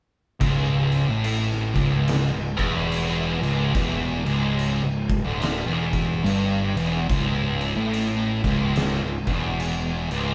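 A swung 4/4 groove at 72 BPM drives this heavy, brooding stoner and doom metal excerpt in C# phrygian, where from 0.4 to 10.3 s an up-front, double-tracked thick fuzz guitar plays a low riff over C# minor, backed by a round, overdriven fuzz picked electric bass and an oversized low-tuned acoustic drum kit whose fat snare, boomy kick and crash cymbal sound gritty and saturated in a bright stone room, the band captured playing live together with light reverb.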